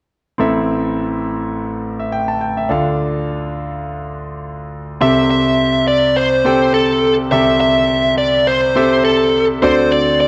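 A lightly swung sixteenth-note feel in 4/4 gives this short cut from a longer pop piece a gentle sway, and the mood is nostalgic and romantic. A clear concert grand piano carries the accompaniment from 0.4 seconds, polished and up front, with a deep bass reaching down low beneath chords that move from A minor to D minor. At 5.0 seconds a biting electric lead guitar takes up the melody, bright and picked, its overdrive giving the line an edge as it sits forward in the mix. Underneath it the harmony shifts to a C6 chord before closing on D7, and both parts play through to 10.3 seconds. A lush hall reverb with a touch of small-room ambience surrounds the pair, lending the polished sound a romantic glow.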